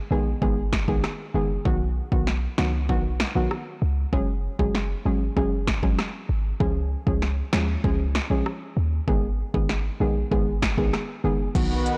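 Summery and bouncy, this dancehall cut at 97 BPM in straight 4/4 sets a dark, round, chorused pluck over a deep, boomy 808-style bass and a deep house drum kit with a punchy snare and smooth hats, cycling through G#m, B, F#sus2 and C# before a lush, warbling unison pad with sidechain pumping arrives at 11.6 s, the recording itself blown-out and overdriven with light reverb.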